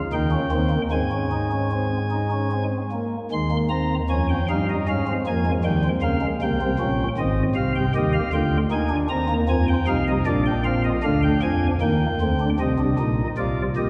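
A wet church reverb with a 2.8-second tail surrounds this recording, which is heard from further back in the room, though the organ's flute stops still sit up front. It is a solemn yet driving baroque-style three-part fugue for solo pipe organ, cut from a longer piece, moving at 77 BPM in a straight 3/4 and tuned to A4 = 437 Hz. The soft flute registration carries a gentle chiff at the start of each pipe's speech, and the baroque voicing spans from Ab1 up to C6. The harmony stays rooted in Ab major, leaning on dominant Eb7 chords and passing through Bbm7/Ab, Fm7 and Bb7 before settling on Eb. The organ plays alone from 0.1 s, opening with a brief statement that returns at 12.6 s on a Cm chord before the piece breaks off at 13.9 s.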